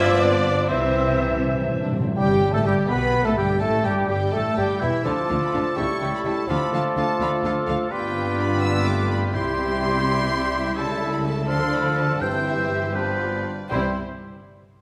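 Lilting in a straight 6/8 at 83 dotted-quarter beats per minute, this quick classical-period movement for symphony orchestra in C major sounds cheerful and spirited, a short passage cut from a longer piece. A focused, rich violin section carries the melody with vibrato high above the staff, while a darker, woody second violin section, a clear oboe with light vibrato, a distant clarinet and a pure, straight-toned concert flute entering at 0.2 seconds weave second lines around it. A mellow, roomy bassoon and an expressive viola section with a smooth top fill out the accompaniment, the French horn section holds sustained chords in the background, and lush bowed cellos and woody double basses anchor the bass. Round timpani struck with soft mallets play a fill from 0.7 seconds and return from 9.3 seconds to push toward the close. The harmony moves through G7 and C, a detour to Dm by way of A7/C#, and a cadence from C/G through G7 home to C at 13.7 seconds, all bathed in the wet reverb of a recital hall.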